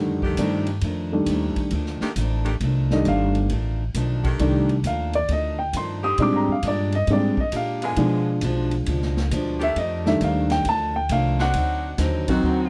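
Lightly reverberant and joyful, this brassy excerpt of big band swing puts a baby grand piano up front, its natural, short-sustain tone soloing throughout over a woody, dark pizzicato upright bass and a quiet picked steel-string parlour guitar with fresh strings. From 0.2 s an edgy, loose saxophone section holds close-miked sustained chords with light vibrato, while a distant, roomy drum kit swings on hi-hat, ride cymbal, a medium-tuned snare and a boomy kick, its top end rolled off. The harmony moves from F13 to Bb13 and a Bdim7, returns to F13, then lands on D7b9.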